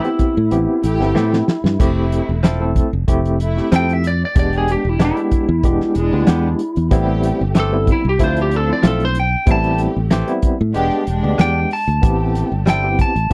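A twangy, slightly broken-up lead guitar carries a mournful solo over a straight-eighth soul blues in A minor at 94 BPM, cut from a longer piece. Beneath it, a barky tine electric piano with fast tremolo, clean direct-recorded guitar stabs, a soul drum kit with a fat snare and a brief fill at 1.2 seconds, and a fingered electric bass entering at 0.4 seconds move through Am7, Fmaj7 and E7#9 chords. A rich bowed string section sustains soft chords from 0.8 seconds, and the dry, close 1970s-style studio sound keeps the drums, bass and lead guitar up front.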